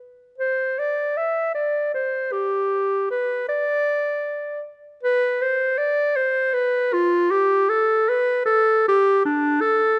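Grave and flowing, this excerpt from a baroque-style fantasia for unaccompanied clarinet moves at a rubato 78 BPM in 3/4, with the clear, up-front clarinet entering at 0.4 seconds and ranging from D4 to E5, captured by close, detailed microphones in light reverb.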